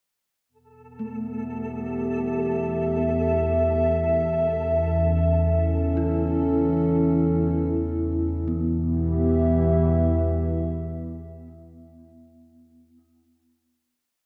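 Unsettling and cavernous, this short dark ambient drone piece moves at 60 BPM in E dorian, its dreamy mix soaked in a lush hall reverb. A deep, moody analog pad enters at 0.5 seconds with nasal, detuned square and sawtooth tones and a sub octave, holding slowly shifting chords from Em to A and back to Em for a final chord at 8.5 seconds. From 2.0 seconds an up-front analog drone settles in the low register, evolving through pulse-width modulation and a moving notch, with chorus and a filter sweep. A grainy, flickering granular texture holds a single high note with its own reverb and fades out by 8.5 seconds. Very quiet and mellow, a bronze gamelan-type metallophone struck with padded mallets rings through arpeggios, its paired tuning producing shimmering beats as two slow loops of unequal length drift against each other.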